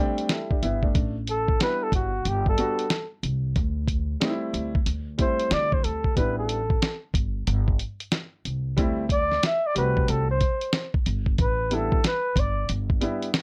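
A dark, short-sustain grand piano fill opens this cool, smoky jazz-hop passage at 92 BPM in A dorian, quickly joined by a muffled, compressed sampler-style drum kit with a thumpy kick and fat snare, woody pizzicato upright bass on steel strings, and, from 1.3 s, a breathy, mellow flugelhorn with light vibrato and scooped notes playing a vintage jazz-style solo over swung sixteenths and suspended chords, every part up front in a dry room.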